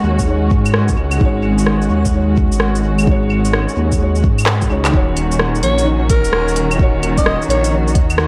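Nocturnal and melancholic, this future garage excerpt at 129 BPM in Eb minor swings its 16ths as a felt-muted upright piano with audible action noise and dub echo, veiled con sordino strings and a dark, rumbling detuned saw bass with tube saturation all pump with sidechain alongside a deep electronic kick, while a crisp kit of claves, handclaps, hi-hat, rim click and shaker with tape echo fills at 4.5 seconds, a very quiet reversed granular swell ends by 4.9 seconds, and a raspy, breathy alto saxophone enters at 5.6 seconds with scooped, growling notes over an echo-heavy mix dusted with vinyl crackle.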